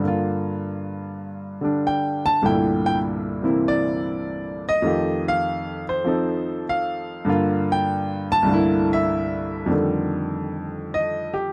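A close, dry studio sound in a 1970s style frames this short solo jazz excerpt, with light reverb and the piano placed up front. A single baby grand carries everything, its tone clear and intimate, with the natural noise of its action audible beneath the notes. The tempo sits at 99 BPM in 4/4, swung on the eighths, and the mood is warm and swinging in F mixolydian. The piano ranges from C2 up to A5, moving through Gm7, C13 and F9 before returning to Gm7 and C13 and landing on F13 at 9.7 seconds. Cut from a longer piece, the passage runs about 11.5 seconds.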